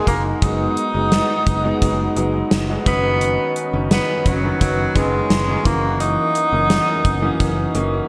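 Bathed in a lush hall reverb with a bright digital sheen, this glossy, uplifting 1980s-style pop excerpt at 86 BPM in F# mixolydian sets a clear, punchy tenor saxophone melody with light vibrato and scooped notes up front over polished, chorused grand piano accompaniment, a brassy, detuned sawtooth pad sustaining chords in the background, a fretless electric bass holding F#, and an airy, big-room gated 80s drum kit with a tight kick and medium-tuned snare, moving through G#m7/F#, Badd9/F# and F#7.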